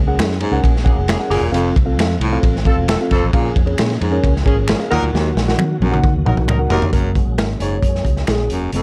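This uptempo 1960s-style soul excerpt feels joyful and danceable, carried by a dark production with little reverb. A crunchy breakbeat kit sits up front with a gritty, saturated sound, punchy kick and dusky cymbals. Close, dry finger snaps ride alongside it. Beneath them, a foam-muted fingered electric bass gives round, amped low notes. A mellow tonewheel organ holds very quiet sustained chords with key click and rotary shimmer, while a worn, slightly out-of-tune tine electric piano comps with subtle chorus. A breathy, whispered baritone saxophone plays a low riff, and a clear horn section adds a second line with light vibrato until a drum fill at 5.1 seconds leads to the electric piano taking a solo at 6.9 seconds.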